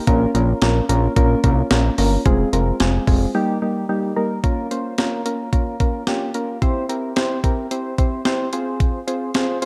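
Bright yet wistful, this short synth-pop excerpt moves at 110 BPM in a straight 4/4, with a dark production, light reverb and a digital sense of ambience. Soft, round synth keys with an electric-piano character carry the accompaniment throughout. Their gentle, warbling chorus and decaying notes give a vintage, full-bodied glow over chords moving from Bbm to Fm and Eb, then Bbm, C and Fm. A fat analog bass, thick with detuned sawtooth and square tones, ring modulation and a filter sweep, holds the low end up front until it drops out at 3.3 s. A clean 12-bit drum machine, sampler-style and tape-tinged, plays thumpy kick, medium-tuned snare and hi-hat from start to finish, sounding re-recorded in a small room. After a brief break, the second section begins at 4.4 s with keys and drums carrying on.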